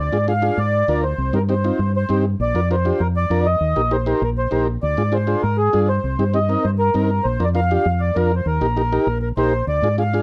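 Latin cumbia at 198 BPM in a passionate, driving mood, this short excerpt features a reedy, smooth accordion carrying the melody up front over a round, punchy fingered electric bass and a vintage combo organ with heavy vibrato, all cycling through Ddim, Cm, Bb and Eb chords in light reverb.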